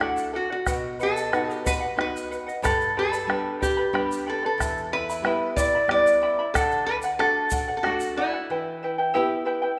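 Andean folk in 3/4 at 92 BPM and E minor, earthy and wistful, where a metallic, nasal lap resonator guitar carries the slide melody up front over a shimmering, double-strung charango and a bright, fingerpicked classical nylon-string guitar, with a round, dry bombo and a grainy, distant egg shaker that fall away near 8 seconds, the ensemble sitting in a moderate scoring-stage reverb as the chords move through D, B, G and E minor.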